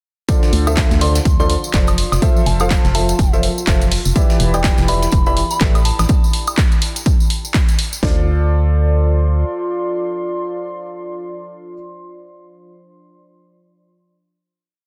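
A dense, heavily limited modern mix with light digital ambience carries this soulful, energetic piano house piece, built on a clear, woody, slightly detuned upright piano playing dotted-rhythm chords that pump with sidechain and echo through delay, joined by a hollow, organ-like FM bass up front. The drop begins at 0.3 seconds with an overdriven house kit's four-on-the-floor kick and cracking snare, tape-warm analog drum machine hats, clap and woodblock, an acoustic tambourine, and a very quiet, gritty, pitched-up looped breakbeat, while a soft synth bell adds short mellow phrases through chorus and phaser. A deep, moody sawtooth pad with slowly shifting chords enters at 1.6 seconds, and the piece settles on a final chord from 8.0 seconds.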